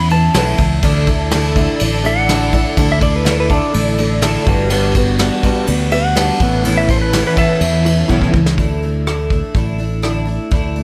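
A clean, dark lap steel guitar plays a second line with slide and volume swells until 8.3 seconds in this hopeful, nostalgic folk rock and heartland rock excerpt at 124 BPM in D major, while a shimmering, octave-doubled twelve-string acoustic guitar picks the accompaniment. An electric guitar through a small old amp adds a slightly broken-up, phaser-tinged riff, a round, punchy fingered bass holds the low end, and a soft brush drum kit with bright cymbals sits up front, closing the opening stretch with a fill just before 8.6 seconds. From 0.8 seconds a dark chamber string section, bowed sul tasto with light vibrato, holds sustained chords in the background of a close, dry sound.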